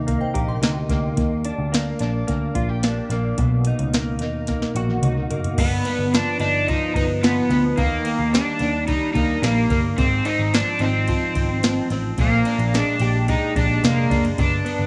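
A sunny, dreamy indie and bedroom pop excerpt in which a soft vintage rhythm box with a deep kick, crisp snare and metallic hats sits up front beside a dark, foam-muted picked bass and a clean, direct-recorded electric guitar wrapped in warbly chorus, low-pass filtering and tape echo, while a glassy synth bell flickers briefly in the background until 1.1 seconds, a drum fill arrives at 4.5 seconds, and an overdriven slide guitar takes the melody from 5.6 seconds over seventh and sixth chords in an echo-heavy, small-room mix.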